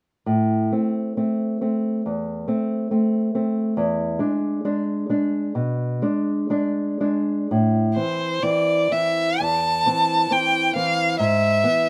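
A dark, small-sounding nylon-string guitar opens this melancholic, solemn fragment of a romantic violin and guitar duo, its thumb-plucked fresh strings laying down A minor and a rootless E7 up front at a rubato 58-71 BPM in 4/4. At 8.0 s a single bowed violin enters up front with a rich, focused tone and vibrato, carrying the melody high above as the harmony, back on A minor since 7.5 s, turns to E/G# at 11.2 s, shortly before the close at 11.9 s. The pair is captured outdoors with light reverb.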